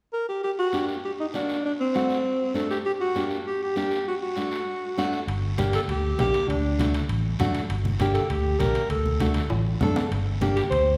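A driving, straight 4/4 cumbia pulse at 198 BPM in G harmonic minor carries this fiery latin excerpt, where a raspy guiro and a full-bodied, fingerpicked nylon-string guitar support an up-front, warm alto saxophone melody with vibrato and a smooth top, until at 5.3 s a round, dark fingered electric bass and ringing metal-shell timbales join, low-tuned congas enter in the background at 5.6 s, a drum fill arrives at 9.5 s, and a recital-hall reverb lingers over the alternating Gm and D changes.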